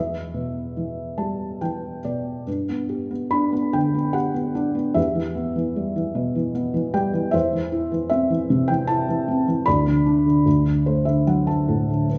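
In a lilting three-beat metre played with free, breathing rubato, this short piece of lyrical classical solo piano unfolds with a melancholic, reflective mood. A single felt-muted upright piano carries everything, spanning from deep bass notes up into the upper register. It sits up front, its tone dark and intimate with thick felt dulling each note and the audible noise of the action close at hand. A brief opening phrase gives way at 2.5 seconds to a longer second passage, and small felt piano fills colour the first moments and return near the close at 10.5 seconds. The harmony drifts from E minor through G major and back to E minor, then to A minor over an E bass, pausing on a bare, unharmonized moment before settling on D. A wet recital-hall reverb surrounds the piano with the resonance of a church or concert hall, and the recording is a fragment cut from a longer piece.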